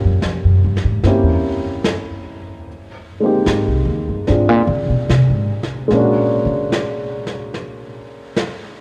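Intimate and romantic, this swung jazz ballad fragment puts a woody, dark pizzicato upright bass up front for a solo on steel strings until it stops at 6.7 s. A natural-sounding baby grand piano accompanies through chords such as Gm7b5, C7b9 and Fm11, while a smooth, rolled-off snare played with brushes enters at 0.2 s and sits low in the blend. A moderate cathedral reverb from a church or concert hall gives the trio a long, spacious tail.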